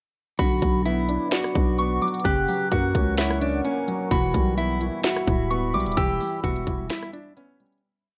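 A trap beat at 129 BPM in a half-time feel opens at 0.4 seconds, with an up-front, hard-clipped kick, a sharp snare layered with finger snaps, rim clicks and crisp hi-hats that break into fast rolls. Alongside it, a growling, buzzy 808-style bass plays long sub-bass notes that follow the kick and slide in pitch, while a mellow, clean electric guitar repeats a looping melody like a sample, softened by spring reverb, delay and a low-pass filter. Underneath, a dark concert grand piano plays rising and falling eighth-note arpeggios with a short, vintage sustain, and a soft FM synth bell adds a sparse, pure counter-melody with chorus and delay. At 1.3 seconds a deep, detuned sawtooth pad enters in the background, holding moody chords over the Bm, F# and Em progression. The mood is menacing and eerie, and the piece fades out from 6.0 seconds into a brief break before ending at 7.9 seconds.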